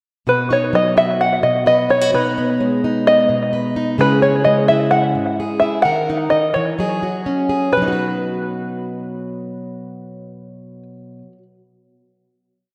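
Soaked in a lush hall reverb, this short indie folk piece has a dreamy sound with a nostalgic yet hopeful mood, set in a straight 4/4 with a building arrangement. An open-back banjo sits up front and carries the melody, its mellow, plunky, twangy fingerpicked tone colored by an analog delay as it spins a motif-based tune in balanced, period-like phrases. Beneath it, a plugged-in steel-string acoustic guitar supplies full-bodied, syncopated fingerstyle accompaniment with a roomy auditorium character. The verse moves through B, G#m/B, C#m, D#m and F#sus2 before arriving at a final B chord at 7.7 seconds. The banjo falls away at 10.8 seconds, leaving the guitar to ring into the reverb until 11.4 seconds.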